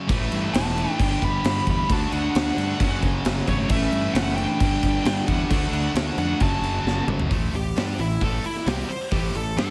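Big arena sound and recital-hall reverb frame this anthemic, powerful hard rock excerpt, where an up-front drum kit with punchy kick and high-tuned snare and a round, fuzzy, overdriven fingered bass drive three rhythm guitars (a bright, tight one and a double-tracked high-gain one, both set back with slapback echo, plus a very quiet, sludgy one) beneath a high-gain lead melody and a darker second line in the background, until a drum fill at 6.9 seconds launches a lead guitar solo at 7.3 seconds.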